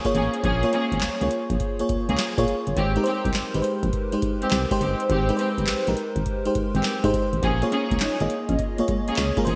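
A lush, dreamy FM electric piano with a soft pad layer and chorus sits up front in this slick, confident new jack swing excerpt, moving between Bbm7 and Abmaj7 over a booming analog drum machine with a deep kick, crisp snare, metallic hats, handclaps and gated reverb. A solid, punchy FM bass anchors the groove, while a muted, veiled string section plays distant stabs through digital delay. A clean, mellow electric guitar riff enters in the background at 7.6 seconds, all set in a bright 1980s-style production with a lush hall reverb.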